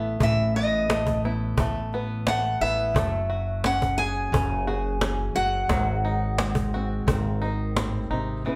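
A cajon keeps a straight 4/4 pulse at 87 BPM, sitting close and dry up front with its faint snares, while a pizzicato upright bass adds a thumpy low end. This short section of a longer acoustic folk piece feels haunting and wistful, moving through Asus2, then F#madd9 at 3.0 seconds, and G#7 at 5.7 seconds. A bright, picked steel-string acoustic guitar carries the melody up front with a touch of plate reverb, stopping at 7.7 seconds. Beneath it, a dark, fingerpicked nylon-string guitar plays accompaniment with audible finger squeak, and a twangy bluegrass banjo, played with fingerpicks, spins percussive arpeggios lower in the mix. The recording has a wet studio reverb and a sense of being heard from further back in the room, giving the small ensemble an intimate yet airy presence.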